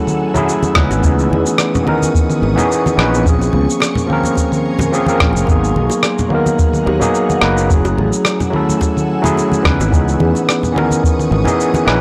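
A lightly swung 108 BPM groove in 4/4 opens this smooth sunset chillout excerpt, built from overdriven electronic congas, cabasa and rim click, soft-handed acoustic congas and bongos recorded close and dry, and a deep, gritty analog kick that joins at 0.8 s alongside a growly, chorused fretless electric bass. Over this, an up-front, overdriven tine electric piano played through a combo amp carries the accompaniment with tape echo. Beneath it, an ethereal, airy pad with ensemble chorus, phaser and reverb sustains minor-ninth chords moving from F#m9 through C#m9, A#m9 and G#m9, all on a saturated, cassette-toned hardware recording.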